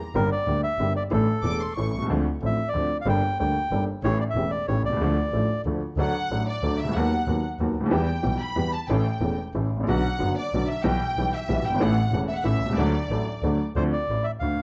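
A rubato 3/4 tango at 185 BPM, tense and melancholic, cut from a longer piece and moving from D minor to D major at 6.0 seconds. A reedy, dark bandoneon carries the melody up front over a woody, slightly detuned upright piano and a close, intimate bowed double bass played sul tasto with light vibrato. A lush symphonic violin section takes a smooth solo from 6.0 to 13.8 seconds before the bandoneon returns, all in a dark production with light reverb.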